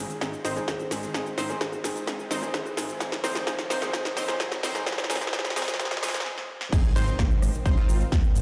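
A punchy, up-front electronic kick drives this anthemic, triumphant festival progressive house excerpt at 129 BPM in Ab major, alongside a big-room dance kit with crisp hats, a fat, detuned analog bass and a sidechain-pumped supersaw stab riff under a filter sweep, over chords moving between Ab and Bbm. Through the build-up, a clear, worn grand piano and a woody, hollow kalimba melody with tape echo sit in the background, alongside a very quiet, dark bowed string section with light vibrato, while a riser builds toward a stop at 6.3 seconds. The drop lands at 6.7 seconds with an impact and a wave-folded unison pluck playing arpeggios, the mix set in a lush hall reverb and the ring of a bare stone room.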